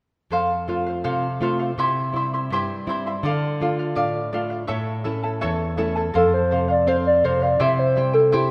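Charango and nylon-string guitar open together at 0.3 seconds, the charango's shimmering double strings ringing over the darker classical guitar with its finger squeak, both fingerpicked over F, C, Dm and A in a festive, earthy Andean folk groove at 82 BPM in 2/4, until a hollow, woody, clarinet-like synth lead with chorus and vibrato steps up front at 6.2 seconds to carry the melody through a deep scoring-stage reverb in this short passage cut from a longer piece.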